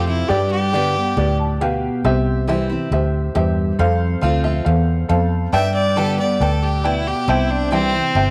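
A clear, biting fiddle stands out up front, its single bowed line carrying light vibrato and an airy, intense edge as it plays a second melody at the opening and returns at 5.5 seconds. This is a nostalgic, heartfelt country excerpt in C major at 137 BPM in a straight 4/4, tuned slightly flat with A4 at 437 Hz. A dark, slightly detuned upright piano sits up front with a boxy, mellow tone and short sustain, adding fills between 1.2 and 2.0 seconds and again later. A picked jumbo steel-string acoustic guitar with old strings gives full-bodied, woody accompaniment. Underneath, a vintage foam-muted fingered electric bass sounds round and amped, sitting up front and prominent. The chords move from G to C, F, back to G and on to C, all within light studio reverb.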